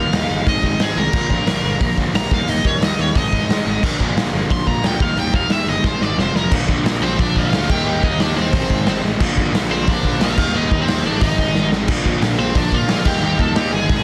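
A dense, heavily limited and nearly dry mix carries this energetic, upbeat punk rock excerpt, where a bright cranked stack guitar up front plays an overdriven solo with tape echo through the first 6.5 seconds over background riffs from a distorted electric guitar and a hollow-bodied overdriven semi-hollow guitar and a growly fuzz picked electric bass, while a gritty, punchy raw garage drum kit with a rolled-off top sits up front and drops fills at 5.8 and 11.6 seconds.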